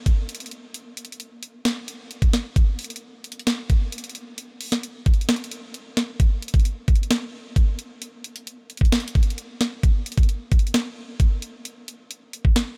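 This hip hop excerpt is a hard-hitting, dark trap drum pattern at 132 BPM in 4/4, played with a half-time feel. The electronic, produced kit is the only part, running from 0.1 to 12.7 seconds with a knocking kick, a sharp snare and bright hi-hats. Its tape-warm tone sits up front in a dry mix with little reverb. The kick drops out from 5.3 seconds until the second section begins at 6.2 seconds, leaving the snare and hats briefly exposed before the full kit resumes.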